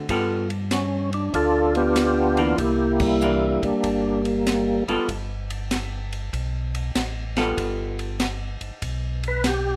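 A medium swing at 96 BPM in 4/4, with eighth notes swung, drives this soulful soul jazz organ trio cut in G mixolydian, moving from G9 to C9 and back to G9 in a short stretch taken from a longer piece. A compact cocktail drum kit with a dry, high-tuned snare and punchy kick works through hi-hat, ride, crash and snare, while a mellow tonewheel organ carries the bass line in a round, dark register with key click and a slow rotary speaker. Up front, a vintage hollow-body jazz guitar adds clean, picked accompaniment with a dark electric tone until about 8.2 seconds. The lead comes from a percussive tonewheel organ, full and lightly overdriven with second harmonic percussion, chorus vibrato and slow rotary, stating its melody from 0.7 to 4.8 seconds and returning briefly near the close. A band accent lands around 2.9 seconds, and a moderate club reverb of about 0.9 seconds places the trio in a club-sized room.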